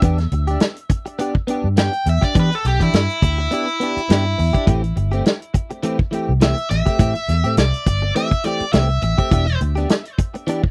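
The overdriven electric guitar carries a bright, picked melody from 1.8 to 9.6 seconds, with tape echo trailing its notes. This is a mournful, soulful straight-eighth soul blues excerpt in E minor at 103 BPM in 4/4, with a light swing on the sixteenths, moving from Em7 to Am7 and back to Em7. Underneath, a clean, direct-recorded electric guitar plays compressed stabs through analog chorus and tape echo, its tone crisp and bright. The muted fingered electric bass is dark, round and up front, stopping at 9.8 seconds, while a tight soul drum kit of hi-hat, kick and snare brings a mid-forward, rolled-off punch from its small booth. The whole piece has the dry, close sound of a 1970s studio with little reverb.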